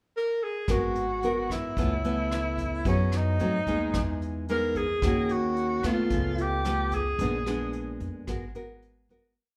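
A breathy tenor saxophone opens this short, wistful bossa nova alone with a pickup phrase, entering at 0.2 seconds. At 0.7 seconds the nylon-string guitar, upright bass and vintage brush drum kit come in together. The guitar is up front, bright and full-bodied, fingerpicked with thumb bass and syncopated plucked chords. The bass plays a woody, growly two-feel of roots and fifths, and the drums use brushes, hi-hat, rim click and a punchy kick with a rolled-off top. The saxophone carries an intimate, motif-based melody with subtone, vibrato and scooped notes, its whispered tone sitting distant and roomy. Played live in one room with moderate studio reverb, the band moves through rich jazz harmony such as G#m9, C#7alt and Emaj7#11 before fading out from 7.2 seconds.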